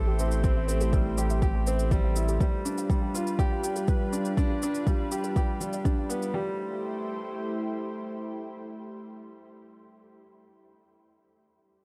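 A steady, straight pulse comes from an overdriven, deep electronic kick sitting up front, joined by a gritty, overdriven shaker, both carrying the boxy character of a small room. This piano-and-strings electronica fragment, cut from a longer piece, feels moving and hypnotic as the harmony shifts between Am7 and G7. A clear, smooth vintage grand piano plays an up-front riff through tape echo, while a lush, thick unison pad of detuned sawtooth and square waves holds bright sustained chords, its chorus shimmering and sidechain pumping giving it a breathing motion. A round, dark analog bass with a fast attack anchors the low end and pumps with the sidechain before dropping out at 2.4 seconds. A very quiet, warbly, dusty lo-fi pluck traces mellow arpeggios coloured by ring modulation and a filter sweep. The kick falls away at 5.9 seconds, and from 6.3 seconds a second section returns to Am7 with piano and pad carrying on under light reverb and digital ambience.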